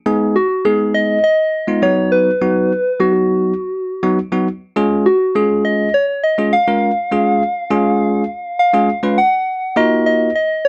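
A bell-like tine electric piano opens this confident, bittersweet pop excerpt at 0.1 s, playing a clean, direct accompaniment in straight 4/4. A soft, round FM synth lead with a fast attack and decaying notes carries the melody from 0.4 s, its bright, keys-like tone coloured by chorus, vibrato and a slapback echo, and both parts sit up front. The close, dry 1970s-style studio sound carries only light reverb, and the harmony shifts into a new section at 9.2 s before the fragment ends.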